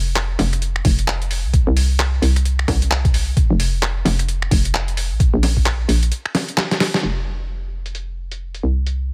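A hollow, knocking FM bass sits up front from the very start, bouncy and punchy with a fast attack and quick decay, roughened by tube saturation as it moves between F1 and C2. This is a soulful, moody two-step UK garage groove at 131 BPM in 4/4, with a 60% swing on the 16ths. A pitched-down, sampler-style boom bap kit of bongos, finger snaps, handclaps, hi-hat and a medium-tuned snare joins almost immediately, gritty, compressed and tape-toned, with low-pass filtering dulling its hats, snare and percussion. A thumpy electronic kick adds weight until it drops out at 5.6 seconds, and a brief break from 6.1 seconds brings a drum fill that ends in a band accent at 6.9 seconds before the groove moves into a new section. Digital ambience surrounds the mix in this excerpt from a longer piece.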